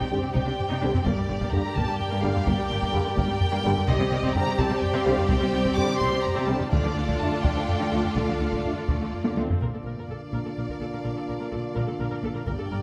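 Moving in a straight 6/8 at 84 BPM counted in dotted quarters, this heroic, epic orchestral film cue is a cut from a longer piece, driven by a taiko ensemble struck with heavy sticks and carrying a distant chamber violin section's soft-attacked melody from D5 to D6 over a focused second violin line, lush violas, a sustained string-section pad that stops at 9.6 s, and a bowed cello and woody double bass foundation. Mellow French horns and smooth-topped trombones hold sustained chords in the background through the Csus2, Gm and Dm harmonies, while a very quiet, close and dry timpani stroke sounds at 6.7 s. A drum fill at 9.3 s leads into a Bb-centred closing passage, all set in a moderate scoring-stage reverb.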